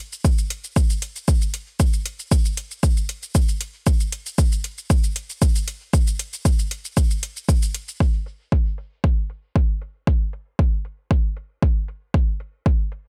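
A deep, overdriven electronic kick drum sits up front in this nocturnal, meditative techno fragment at 116 BPM in 4/4 with a light 16th-note swing, alongside a quieter layer of electronic shaker and metallic hi-hat, both overdriven and low-pass filtered, in a dry, bright 1980s-style digital production that shifts into a new section at 8.0 seconds.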